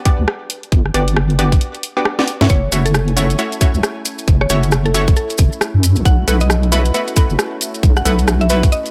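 A deep, dark wobble bass sits up front in this soulful, skippy two-step UK garage cut, its detuned square-and-sine tone chorused, tube-saturated and pumping with sidechain compression. The track runs at 135 BPM in F# minor with a 61% swing on the sixteenths. It opens on punchy, bright chord stabs of detuned sawtooth and square waves, treated with chorus and digital delay, over a tight, layered electronic kick and a garage kit of hi-hat, rim click and cracking snare. The kick drops out at 1.6 seconds, and a drum fill at 2.2 seconds leads into the drop at 2.5 seconds. There a woody, round, mallet-like FM pluck carries a mellow melody with chorus and delay, while a smooth, warbling vintage analog pad sits in the background with subtle chorus and pumping, and grainy, close acoustic maracas add texture. The harmony moves from Gmaj7 to F#m7 and then B7sus4, and the dry sound carries little reverb.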